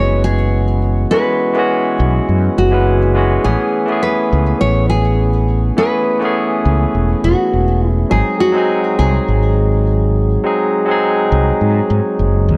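A straight 4/4 pulse at 103 BPM carries this wistful sunset chillout fragment, cut from a longer piece, as a round, direct fretless electric bass with subtle chorus sits up front beneath a bright, barky tine electric piano. The piano comes clean through a combo amp and, like the fingerpicked nylon-string guitar carrying the melody, is treated with digital delay; the guitar is full-bodied and deep, with audible finger squeak, and it drops out at 12.1 seconds. Chords move from F#9sus4 to Amaj9 and then G#7 in a dark, warm production with light reverb and a small room ambience.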